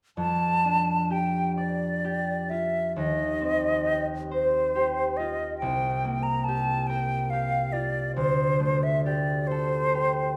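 Bathed in a wet recital-hall reverb, this luminous, dreamy excerpt of impressionist classical music for flute and harp drifts in a rubato 6/8 at 42-47 BPM (dotted quarters) in F major, with an airy, silvery concert flute carrying the expressive melody up front with soft attacks, vibrato and lifted highs over a bright, ringing, fingerpicked concert harp accompaniment, both playing from 0.2 to 10.4 s through chords of F69, Eb69, C7sus4 and Dm7.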